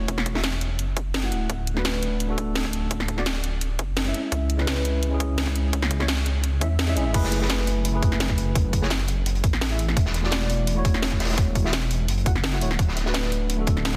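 A tine electric piano, warm and clean with phaser and dub echo, opens this soulful, lush liquid drum and bass excerpt at 170 BPM in F# minor over a deep, rumbling, detuned saw bass, while an up-front overdriven electronic kick with a tight punch and a drum kit of cracking snare, bright hats and crash build through chords of Esus4, D6 and C#m7. At 7.1 seconds the drop arrives on F#m11 and a crunchy breakbeat kit joins, its gritty, rolled-off hats and medium-tuned snare sitting low beneath the main drums as the harmony moves to E9sus4 and back to D6. The mix carries a moderate concert-hall reverb and a dense, heavily limited modern sheen.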